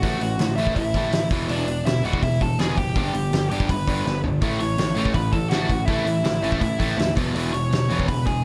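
This rowdy, rebellious punk rock excerpt bursts in at once at a straight 164 BPM in 4/4 and A major, with a biting, bright lead guitar carrying the melody over an up-front distorted electric guitar riff. Underneath, a fuzz-driven picked electric bass sounds dark, round and punchy, while a loose indie drum kit brings a fat snare, a tight kick, hi-hat and toms with a roomy, rolled-off top. The chords move from A5 to E, then G, and back through A to E. A drum fill at 4.1 seconds leads into the entry of an overdriven semi-hollow guitar at 4.4 seconds, which adds a riff of its own with a hollow-body tone from the background. Light reverb places the whole band in a studio room.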